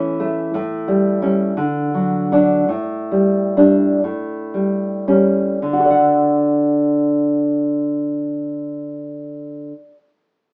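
This romantic piece for solo classical guitar, cut from a longer work, has a tender, warm mood and a gentle 6/8 metre in D major. The tempo is slow and free, roughly 35-60 BPM counted in dotted quarters, with rubato throughout and a slowing over the first 5.6 seconds. The nylon-string guitar sits up front, its thumb-plucked tone warm and acoustic as it moves across a range from A2 to F#5. The harmony moves from A and A7 to a brief D, passes through a suspended A7sus4 and back to A7, and settles on D at 5.6 seconds, where a new section begins. A moderate studio reverb adds a short halo, while the overall sound has the intimate, slightly boxed character of a small speaker.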